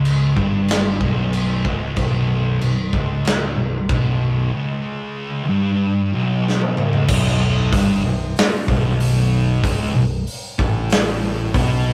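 A straight 4/4 pulse at 94 BPM drives this ominous, hypnotic stoner and doom metal fragment, cut from a longer piece, where two thick fuzz guitars grind out a dark, distorted riff, one up front and the other set back in the background, over a bright, overdriven picked electric bass. A big acoustic rock kit sits up front with a punchy kick, medium-tuned snare, toms, hi-hat and crash, its sound mid-forward with a rolled-off top, and a drum fill from 6.5 to 7.1 seconds ushers in a new section. Everything sits in a stone room with moderate reverb, captured as a rough rehearsal-room recording with a faint mains hum.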